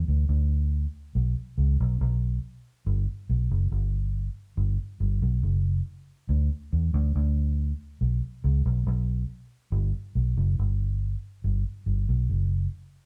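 Reggae in a sunny, laid-back mood, this short piece cut from a longer performance features a lone vintage electric bass played with the fingers, heard by itself for its full 12.7 seconds. Its tone is dark, round and punchy, with a foam-muted, amped character that sits up front in the mix. The line stays low, moving between F#1 and E2 in a straight 4/4 feel. The tuning sits slightly below standard concert pitch, at A4 = 437 Hz. A moderate studio reverb gives the sound a sense of a band playing live together in one room.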